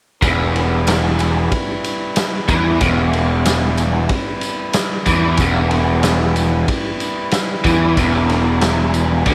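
From 0.2 s, a hypnotic, mysterious psychedelic rock groove starts at once on a single E minor chord: an overdriven, double-tracked electric guitar riff churns through a rotary speaker, up front beside a fuzz-soaked picked bass with a punchy attack. A raw garage drum kit of kick, snare and ride sits close, dark and smooth with a rolled-off top and a bright stone-room sound, while a reedy, breathing pedal harmonium holds mellow chords and a jingly tambourine stays in the background. Light reverb frames this section, cut from a longer piece, which runs until 9.3 s.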